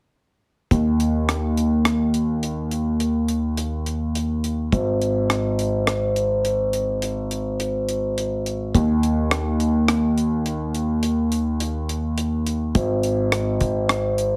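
Driving and intricate, this progressive instrumental excerpt moves at 105 BPM in an uneven 7/4 with a straight feel, as a dark, mellow, boxy grand piano holds down the low bass line and a dry, deep reggae drum kit with a tight kick, hi-hat and rim click sits up front beside it from 0.7 seconds, all captured with little reverb and a heavily compressed radio sound.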